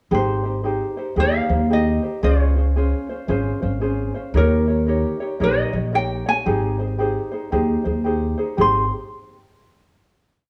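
A relaxed, dreamy Hawaiian piece with a gentle swing, in which a fingerpicked ukulele sings a light, motif-based melody in period phrases while a second, thumb-plucked ukulele strums eighths in open chord shapes through Abmaj7, Dbmaj7 and Eb7. Beneath them, a woody, up-front upright bass with steel strings plays pizzicato in a two-feel of roots and fifths, and all three parts sound from 0.1 to 8.9 seconds. The brief piece settles onto a final chord at 8.6 seconds, bathed in a moderate recital hall reverb and small room ambience.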